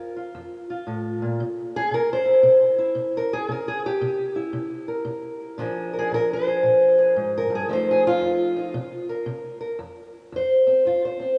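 Swung eighth notes in a loping 4/4 carry this gritty, soulful acoustic country blues, cut from a longer piece. A fingerpicked steel-string parlour guitar plays alone and sits up front, its dark, boxy tone moving from F through C7, Bb7 and F7 before settling on an F5 at 9.8 seconds. A lush hall reverb washes over the rough home-demo sound and its small room ambience.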